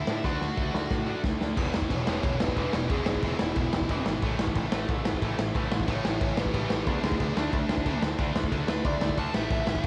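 Rebellious and rowdy, this punk rock excerpt charges along at 181 BPM in a straight 4/4, opening on a drum fill from the raw garage kit, its punchy kick, medium-tuned snare and crash sitting up front with a rolled-off top and cassette grit, before a dark, overdriven lead guitar launches into a solo at 1.6 seconds over chords moving from E5 through A5 and D5, all driven by a growling overdriven picked bass and a bed of three picked distorted rhythm guitars, one high-gain and double-tracked in the background and two bright and very quiet, captured as a home cassette recording in a small room.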